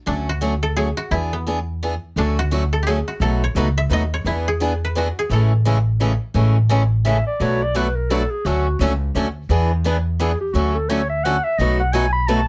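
Acoustic string swing in a lively 3/4 lilt, this close, dry excerpt opens with a mellow, fingerpicked koto melody over bright, boxy parlour guitar, a thumpy gut-string upright bass and a second picked swing guitar with audible finger squeak entering at 2.2 seconds, before the koto gives way near 7.2 seconds to a dark, subtoned clarinet solo with light vibrato and scooped notes carrying the piece to its cut-off.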